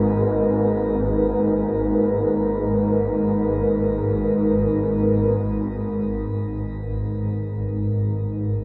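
Drenched in a long cathedral reverb, this short ambient fragment from a longer piece floats in free time with an unsettling, dark mood. A deep, moody analog pad built from detuned sawtooth and triangle tones with a sub octave holds sustained chords from an Abm(add9) chord under chorus and shimmer reverb. Beneath it a swarming, wave-folded granular drone sits up front, tense and evolving, until a filter sweep reshapes it from 5.4 seconds.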